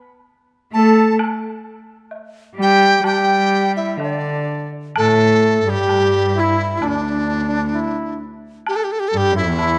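Pastoral and festive, this excerpt from a longer Chinese traditional chamber piece unfolds at a rubato 65 BPM in 4/4. A large bamboo dizi carries the melody up front from 0.7 seconds, its pure, buzzing-membrane tone bright and reedy, with vibrato and tongued notes. A single bowed cello enters at the same moment as a second line, rich and up front, with light vibrato and a period-style gut-string sound. A warm flugelhorn joins at 0.8 seconds with a second line of its own, playing scooped notes in a vintage, jazz-style manner. From 1.2 seconds an acoustic woodblock adds percussion in a live room, and the music moves into a new section at 5.0 seconds. Close, detailed microphones and light reverb keep the small ensemble intimate.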